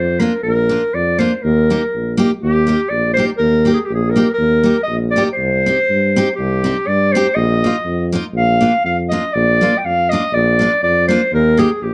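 A mellow clarinet carries the melody over a soft-attack tuba bass with light vibrato from the start, joined at 0.2 seconds by a full-bodied picked steel-string acoustic guitar, in this jolly, festive alpine dance-band excerpt at 122 BPM in 2/4 and Eb major, its chords moving from Bb through Eb, C minor and a Bbsus4, with plate reverb on the clarinet and a dark small-room sound overall.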